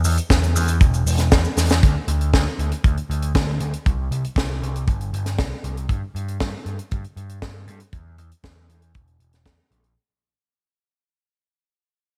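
A tight, up-front kick drives this melodramatic, nostalgic italo disco snippet, cut from a longer piece, alongside a dark, round, overdriven picked electric bass and a small-room funk kit of cabasa, hi-hat and high-tuned snare bathed in gated reverb, with a drum fill at 1.6 seconds before the bright 1980s-style digital mix begins fading out at 1.8 seconds.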